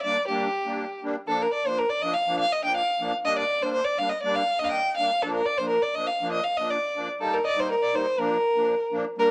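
Bittersweet and soulful, this brief klezmer fragment in a straight 2/4 sets a single bowed violin up front, singing a focused, smooth-topped melody in a warm voice with vibrato. Beneath it, a reedy musette accordion shimmers with an airy accompaniment, moving from G minor through B-flat and E-flat. Both parts carry a cassette-tape grain and plate reverb, giving the home recording a moderate studio-room glow.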